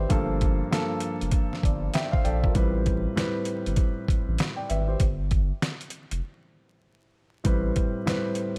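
Boom-bap hip-hop at 98 BPM with a 16th-note swing, gritty and reflective, this short excerpt pairs a dark, mellow concert grand piano, treated with tape saturation and sitting up front, with a deep, sine-like saturated sub bass over Gm9 and Am9 chords. A sampler-style drum kit, compressed and pitched down, drives it with a thumpy kick, a medium-tuned snare and hi-hat, while vinyl crackle coats the dry mix. A break arrives at 5.0 seconds before the Am9 chord returns at 7.5 seconds.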